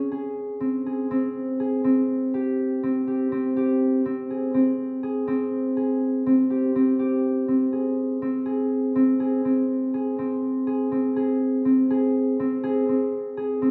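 Bathed in the wet reverb of a recital hall, this shimmering, restless contemporary instrumental excerpt features a solo concert harp, thumb-plucked, ringing and up front, moving through Abmaj7 and Ab/C harmonies in Ab major within the C4 to Ab4 range at 245 BPM in eighths in a straight 7/8, with a new section beginning at 8.0 seconds.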